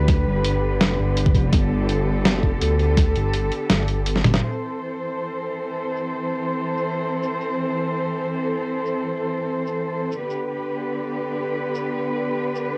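A home-cassette sound with moderate studio reverb carries this dark, spacious half-time drum and bass fragment, where a lush bowed cello section holds sustained chords with vibrato and sidechain pumping, a deep, detuned saw bass rumbles beneath until 4.4 s, an overdriven, knocking electronic kick thumps until 3.0 s, and a gritty, pitched-down sampler-style kit of filtered snare, hi-hat, shaker and toms plays a fill at 4.2 s before continuing with the cellos.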